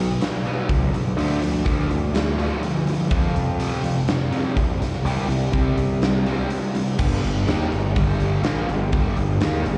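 A straight 4/4 pulse sits in a heavy half-time feel for the first 7.0 seconds before the groove shifts into a new section, giving this brooding, angsty cut from a longer quiet-loud alternative rock piece a sense of restless forward pressure. A double-tracked fuzz guitar drives the riff up front, bright and compressed, with a slapback echo trailing its distorted picked notes as the chords move through B5, Dm, F5 and C5 before landing on Gm. Beneath it, a picked electric bass growls with overdriven fuzz, heard direct and amped. A huge arena drum kit joins at 0.2 seconds, its punchy kick, medium-tuned snare, hi-hat and crash set in a pumping hall with a coat of vintage 12-bit sampler grit. The whole thing sounds like a live gig caught through the venue's PA and dubbed to cassette, with small-room ambience and recital-hall reverb lending it a rough, immediate character.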